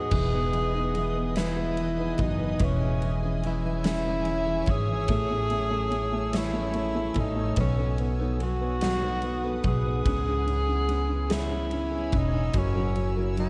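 A tender, swaying six-eight pop ballad in E major at a slow 48 BPM, this excerpt from a longer piece sets an up-front tenor saxophone with light vibrato and a smooth top singing the melody over a soft, felt-muted upright piano with audible action noise, a woody, growly pizzicato upright bass, picked steel-string acoustic guitar arpeggios with analog delay in the background, a cloudy, warbling granular pad holding sustained chords in its built-in reverb, and a huge arena drum kit with a punchy kick, medium-tuned snare, ride and crash, all moving from Emaj7 through Amaj7 and B7 to close on F#7 in a dark, lightly reverberant mix.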